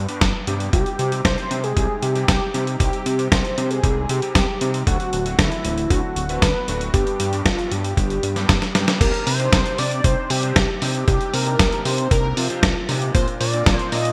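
A thick, detuned sawtooth unison lead with vibrato and digital delay carries the melody from the opening moment of this bittersweet, nostalgic italo disco excerpt, over a fat analog bass with a filter sweep and clangy electric grand piano stabs tucked in the background under ensemble chorus and delay. A gritty, compressed sampler-style drum kit with gated reverb sits up front beside a thumpy electronic kick, and a drum fill at 8.6 s leads into a new harmonic section at 9.0 s. The bright 1980s-style digital production carries a moderate plate reverb and a faint mains hum.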